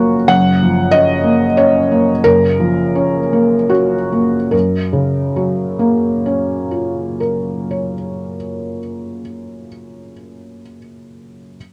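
This is a neoclassical minimalist piano piece, taken from a longer work, with a tender, intimate mood. A felt-muted upright piano plays alone throughout its 11.6 seconds, moving freely in a rubato three-four time and slowing down over the opening 4.5 seconds before a new section begins. The piano sounds soft and mellow, sitting up front with a natural character, and the audible action noise of its mechanism adds to the close, personal feel. Its range stretches from F#1 in the low bass to F#5 in the upper middle. The home cassette recording places the instrument in a modest booth ambience with a short decay.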